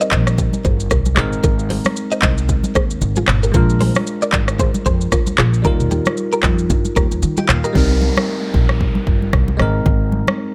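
Mellow and smooth, this afrobeats excerpt sways with a swung sixteenth feel as a bell-like, barky tine electric piano with phaser and a bright, compressed clean guitar riff with ensemble chorus ride over an up-front electronic drum kit of deep kick, metallic hats, handclaps, rim click, shaker and toms. A woody, thumpy pizzicato upright bass anchors the Cm7, Abadd9, Bb7 and Ebadd9 changes, while damped, soft-handed congas sit in the background within a digital ambience. The guitar drops out at 7.7 seconds, and at 7.8 seconds the hi-hats fall silent and an electronic downlifter enters.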